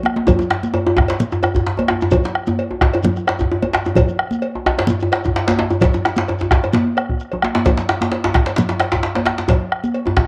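West African traditional drum ensemble music, earthy and driving at 130 BPM in 4/4 with a light sixteenth-note swing, where a hard-hand, medium-tuned djembe with a vintage, band-limited tone sits up front over a round, close bombo, bright high-tuned congas, a softer cracking djembe and a grainy shekere in the background, and a metallic cowbell, with drum fills at 0.0 and 7.3 seconds, all captured as a cassette home recording with moderate spring reverb and small-room ambience, cut from a longer piece.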